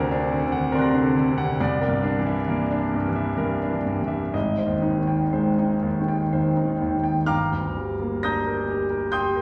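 A triple metre, pulled freely by rubato, gives this short impressionist solo piano passage its unhurried, drifting gait. The mood is hazy and nocturnal, and the grand piano carries everything from 0.0 to 9.4 seconds, ranging from deep G1 bass to a glinting A#6 at the top. The instrument sits up front with a clear, intimate and natural tone: the soft clatter of the action is audible, and its notes ring with long sustain. The harmony slides through colourful extended chords, from a Daug7 at the opening to C9 and then Abmaj7, before settling onto Gm7 as a new section begins at 7.3 seconds. A wet reverb with the air of a church or concert hall wraps the piano in a soft glow, and the passage is lifted from a longer piece.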